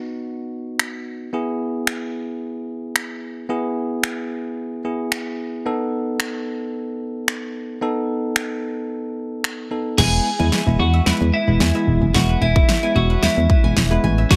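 Euphoric and summery, this dance-pop fragment opens on a bell-like tine electric piano pumping with sidechain over chords moving from B to E to B7, joined at 0.8 seconds by a punchy, up-front electronic drum kit of kick, fat soft-clipped snare, finger snaps and crash. At 10.0 seconds a build-up and drum fill arrive as a round, mellow FM bass pumps in, a twangy, compressed twelve-string electric guitar carries the melody through delay, and a qanun adds bright-edged, fingerpicked arpeggios with delay and sidechain pumping. A very quiet, glassy FM pad with ensemble chorus slips in beneath at 10.9 seconds, all set in light reverb under a dense, heavily limited modern master.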